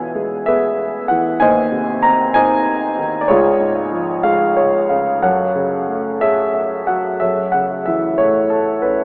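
Reflective and dark, this brief classical fragment features a solo concert grand piano playing lyrically in F# minor, in 6/8 at about 62 BPM (dotted quarters) with a free rubato feel and tuning set to A4 = 439 Hz. The piano sounds warm and up front, with deep bass across its C#2 to A#5 range, and moves through E, G#/D#, C# and F#madd9 before a short fill at 6.2 seconds leads to a closing F#m7 at 7.2 seconds. A huge, echoing reverb with a long 8.6-second decay fills a vast space, and the overall sound has the narrow, filtered character of AM radio.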